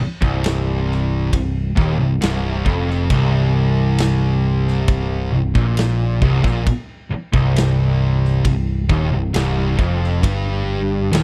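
The guitars and bass start together at the opening, with the drum kit joining at 0.2 seconds, in this ominous, hypnotic stoner and doom metal excerpt cut from a longer piece. Two thick fuzz guitars carry the low riff with distortion, one bold and up front, the other darker and sitting in the background, while a raw garage guitar adds a double-tracked, overdriven layer. Beneath them, a picked electric bass with overdrive gives a growly bottom end, heard both direct and through an amp. The big rock kit sounds natural and acoustic in a big room, with a tight kick, medium-tuned snare and bright ride cymbal pushed up front. The whole passage rests on a single minor chord at a slow, straight pace in four, captured as a dry, close recording in the manner of a 1970s studio with small room ambience.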